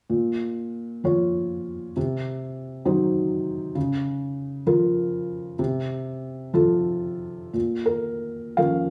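A felt-muted upright piano carries this brief neoclassical minimalist fragment alone, its soft, mellow tone sitting up front with the audible noise of the action close at hand. Set in Bb minor and 6/8, the playing moves with a rubato feel at roughly 57-68 BPM counted in dotted quarters, giving it an unhurried, breathing pulse. The range stretches from Bb2 to F5, and the harmony passes from Bb minor through C diminished, Bb minor over Db and F over C before settling back on Bb minor at 7.5 seconds, where a new section begins. Light reverb from a small room keeps the sound close and intimate, matching the melancholic mood. The clip runs from 0.1 to 8.9 seconds, cut from a longer piece.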